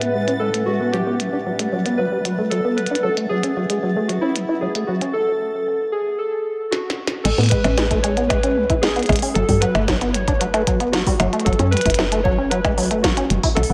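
This wistful, intricate IDM excerpt at 114 BPM opens with warbling lo-fi synth keys carrying a nostalgic melody over a tape-like pad, a rubbery, resonant acid bass arpeggio up front, glitchy drums with clicky hats, a tiny snare and tape echo under a filter sweep, and a bright, bubbling texture, until the pad and texture fall away at 5.1 seconds and, as a drum fill closes the first section, a woody, round FM bass enters at 7.2 seconds and a deep electronic kick follows at 7.5 seconds, the mix soaked in a dreamy plate reverb.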